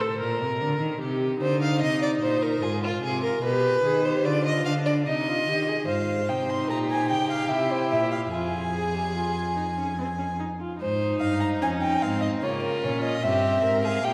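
A dark, intimate violin with light vibrato and an airy, soft-attacked bow carries the melody from 5.9 s, where the key moves from C minor to F minor, in this driving yet contemplative baroque-style fugue for string quartet at 74 BPM in 3/4. It enters over a smooth, even second violin line already sounding from 1.4 s, a focused viola accompaniment, and a close, expressive cello bass with rich vibrato and portamento, all resonating in the wet reverb of a church.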